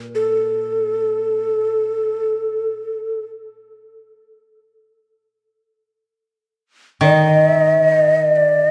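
Low, woody koto accompaniment opens this still, meditative fragment of Japanese traditional chamber music in free time, and a breathy, hollow shakuhachi melody with vibrato and a crisp, chiffy attack joins at 0.1 seconds, both held up front in a dark production bathed in a long church reverb.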